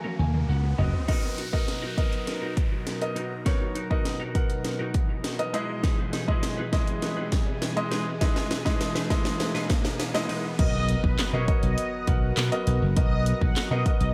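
An echo-heavy mix with light reverb opens this euphoric, upbeat dance-pop excerpt at 101 BPM in B major, where a clear, intimate concert grand piano with audible action noise and a punchy house drum kit with cracking snare play fills over a background riser. A chorused clean electric guitar riff with tape echo sits back in the mix until 10.5 seconds, and an airy, breathy pad enters at 1.1 seconds. At the 10.6-second drop, a bright, up-front slap bass, heard briefly at the very start, returns alongside a detuned, evolving supersaw swell melody that arrives with an impact, the piano, pad and bass all pumping to the sidechain.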